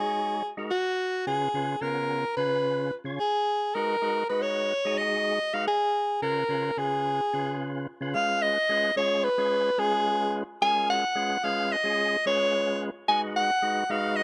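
A bright, breathy soprano saxophone carries a scooped, jazz-style solo melody up front over a fat, lightly overdriven tonewheel organ with percussive attack, vibrato and fast rotary speaker, together moving through G#m7 and C#7 harmony in an intricate, tense progressive instrumental in 9/8, with a second section arriving at 8.2 seconds, all set in light reverb within a dark production that is cut from a longer piece.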